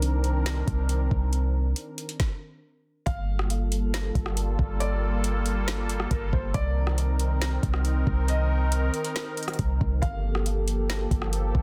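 A half-time 4/4 groove from a smooth R&B drum kit, with a soft kick, woody snare, rim click and metallic hats sitting up front, drives this hazy, spacious cloud-rap hip hop excerpt, pausing for a brief stop at 2.2 seconds. A deep, boomy 808-style bass with a dark sine tone anchors the low end under a sweeping, resonant pad of detuned vintage sawtooth chords that warble through lush chorus and sidechain pumping, moving from Cm9 to Gm9 and Cm7. At 3.1 seconds a soft, felt-muted upright piano enters with an intimate, mellow melody trailed by delay, all within digital ambience and a dense, heavily limited modern master.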